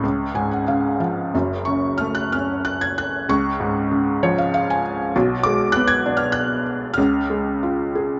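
In a rubato 3/4 that drifts between 88 and 101 BPM, this brief classical fragment for lyrical solo piano unfolds with a brooding, moody air. The only instrument is a felt-muted upright piano, placed up front and sounding soft, mellow and intimate, with the thin felt and audible action noise lending it a close, private character. Its range stretches from F#1 up to G#6, and short fills open the passage at 0.0 seconds and return at 3.9 seconds. The harmony moves from C# to F#m, back to C#, through G#dim/B, and settles on C# again by 7.0 seconds. A moderate studio reverb adds gentle space, while the dark production keeps the top end rounded off above 7.6 kHz, so this 8.2-second section, cut from a longer piece, feels hushed and inward.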